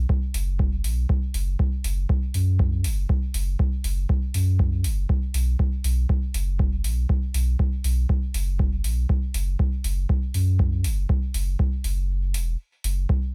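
A pure sine sub bass sits up front, deep, clean and dark with a fast attack and sustained tone, pumping under sidechain as it moves between E1 and F#2 in this cavernous, hazy dub techno excerpt at 120 BPM in 4/4, with a light 16th-note swing and tuning at A4 = 439 Hz. A deep analog kick, also up front, and quieter metallic analog hi-hats, both re-recorded in a small room, carry the groove in a dry mix. A break arrives at 12.1 seconds and runs to 13.1 seconds.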